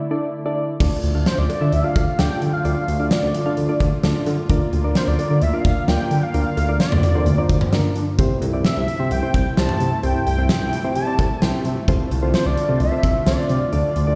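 Synth-pop at 130 BPM in D minor, this driving, melancholic excerpt opens on a detuned analog pad and round, vintage electric-piano-like keys over an Asus4 before a huge arena kit with a fat snare, punchy kick and bright cymbals joins a smooth sawtooth bass at 0.8 seconds, while a thick, bold unison lead with tape echo enters at 1.3 seconds over chords moving from Dm through Bb/D and C6 to F6/C, all heard as if played through a big sound system in a bare stone room with the top end dulled.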